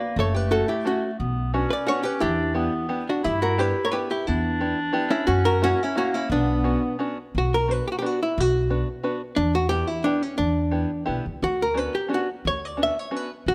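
A 3/4 pulse at 177 BPM, bent by rubato, drives this bittersweet, whirling musette waltz in B minor, cut from a longer piece. An up-front archtop guitar, miked and amplified, carries the melody with a dark, clean, compressed hollow-body tone and picked notes. A clear clarinet in classical style adds a distant, roomy second line until 7.1 seconds, just before the waltz moves into a new section at 7.3 seconds. The upright bass, also up front, gives woody, thumpy pizzicato on steel strings, while an open-back banjo supplies a fingerpicked, twangy, plunky and percussive accompaniment. The harmony moves through chords such as F#m7, Bmadd9, Em7 and G6 before settling on Bmadd9/D, all captured by close, detailed microphones in a moderate recital hall reverb.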